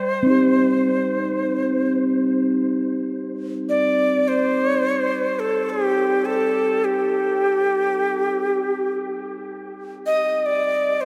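Haunting and meditative, this free-time world meditation music is cut from a longer piece and set in a vast, echoing space with a long cathedral reverb. A breathy, bright Native American-style cedar flute carries the melody up front, its crisp, chiffy attack and vibrato trailed by tape echo, across the full 11.1 seconds. Beneath it, a pure, ringing quartz singing bowl struck with a felt mallet sounds close and full with slow beating, sounding until 7.7 seconds.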